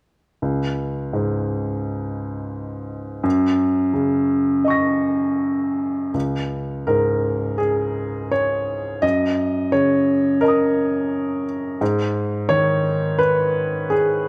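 Neoclassical minimalist piano at 85 BPM in 4/4, played with a melancholic, wistful rubato feel in this fragment cut from a longer piece. A lone upright piano sits up front with a woody, intimate tone, long sustain and audible action noise, ranging from C#2 to A#6; single notes of C#5 and F#6 recur before a G#m chord arrives at 11.8 seconds. The piano rings in a moderate recital hall reverb, and the second section begins at 6.1 seconds and runs to the close at 14.3 seconds.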